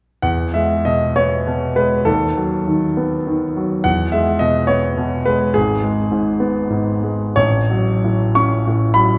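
A romantic classical character piece for solo piano, this short excerpt is cut from a longer work and carries a warm, hopeful mood. A clear concert grand carries everything from 0.2 to 9.2 seconds, spanning G#1 to C#6, its tone smooth and vintage-tinged with a deep bass and an up-front presence. The music sits in E major and 6/8 at a flexible 59-72 BPM counted in dotted quarters, with rubato giving the phrasing an unhurried, breathing quality. The harmony moves from E through B7/D# and back to E, then turns to G#m at 5.6 seconds before settling on F#m/A. A lush scoring-stage reverb with a 1.8-second tail places the listener further back in the room, wrapping the instrument in a generous, glowing space, and the tuning sits slightly bright at A4 = 444 Hz.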